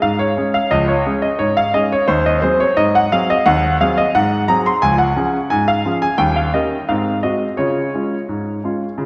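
Ragtime piano in D-flat major at 87 BPM, a cheerful, jaunty solo in a straight 2/4 that runs for about 9.1 seconds, cut from a longer piece and tuned slightly low to A4 = 437 Hz. A clear concert grand sits up front with a natural tone and deep bass, ranging from Db2 to C6 as the harmony moves from Db through Ab7/Eb and Eb7 to Ab7 before settling back on Db at 7.6 seconds. A lush hall reverb with a 2.6-second tail soaks the mix in a dreamy glow.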